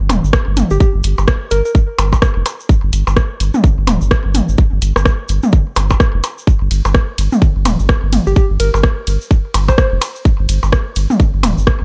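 A tight, layered electronic kick drum sits up front in this sparse, clinical minimal techno excerpt, driving a 127 BPM 4/4 pulse in G minor with a 60% swing on the sixteenths. Beneath it, a deep, thick sub bass with a saturated triangle tone and fast attack holds sustained notes between D1 and G1, pumping through sidechain compression. An overdriven analog drum machine supplies hi-hat, ride cymbal and rim click with a roomier character, while electronic toms and percussion blips sit close and up front, trailed by digital delay, and a grainy acoustic tube shaker stays in the background. A round, gentle FM synth lead with a keys-like, vintage warble plays briefly between 0.7 and 1.7 seconds and returns from 8.3 to 9.9 seconds, ranging from G4 to C5 with chorus, vibrato and digital delay. The mix is dry and close, with little reverb, opening on a G5 chord in this 11.8-second fragment of a longer piece.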